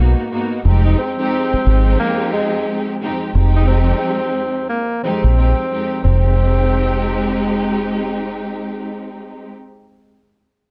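Boom-bap hip-hop at 89 BPM with a swung sixteenth feel, reflective and moody in F minor, with a round, punchy, foam-muted fingered electric bass up front under a lush bowed string section colored by cassette tape and plate reverb, gliding on portamento through an Abm9 to Fm9 change, while a mellow, breathy tenor saxophone enters at 0.9 s with subtone, vibrato and scooped notes in a jazz-style solo before ending at 8.0 s.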